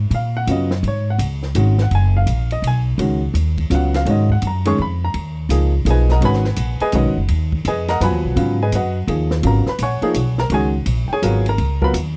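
A dry, close 1970s-style studio sound frames this spiritual, searching modal jazz waltz in G# dorian at 167 BPM with a swung 3/4 feel, where a woody pizzicato upright bass with steel strings sits up front beside an intimate, worn baby grand piano with audible action noise and short sustain, while a compact cocktail kit with dark cymbals, a high-tuned snare and a punchy kick plays further back, all holding G#m9 before shifting to C#sus4/G# at 9.4 seconds.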